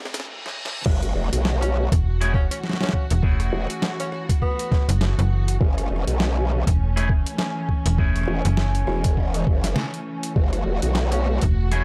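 A swung 4/4 glitch hop groove at 101 BPM in F# minor, funky and playful, opens on an F#m7 chord with a drum fill from a tape-warm boom bap kit of snare, hi-hat, rim click and crash, an electronic riser and a reverse cymbal, before the drop lands at 0.9 s with an impact and a gritty, pitched-down electronic kick. Up front, an aggressive, wobbling growl bass with chorus sits beside a snappy, metallic slap-like FM bass, while a distant bowed string section holds smooth sustained chords and a twangy clean electric guitar plays stabs, both pumping with the sidechain and the guitar trailed by dub echo. A mellow subtone tenor saxophone with scooped notes and dub echo enters at 1.6 s from a roomy distance, all in a dark, dry production from a longer piece.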